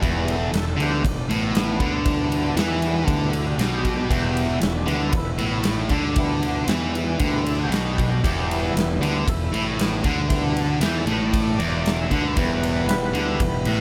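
Blues rock in the power-trio mold, with a southern rock streak, this gritty, smoky excerpt moves at 116 BPM in a straight 4/4, sitting entirely on an E minor chord. An overdriven tonewheel organ takes the solo role across the full 13.8 seconds, holding thick sustained chords colored by chorus vibrato, key click, second harmonic percussion and a slow rotary speaker. Beneath it, a double-tracked distorted electric guitar drives a bright, picked riff low in its range, placed up front in the mix. A fuzz-drenched fingered electric bass adds a growly, punchy bottom end through overdrive. A huge arena drum kit of kick, snare and ride cymbal fills a pumping hall, its punchy kick and glittering cymbals sitting forward, while light reverb rounds out the sound.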